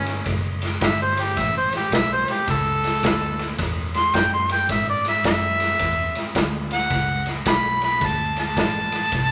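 A close-miked, overdriven harmonica carries a bright, jazz-style solo with light vibrato and scooped notes over a rollicking, laid-back electric blues shuffle at 108 BPM in A mixolydian, moving from A7 to E7 to D5, while a dark, round, foam-muted fingered electric bass plays alongside a gritty, saturated garage drum kit of punchy kick, ride cymbal and medium-tuned snare pumping in a stone room, all within this short cut from a longer piece.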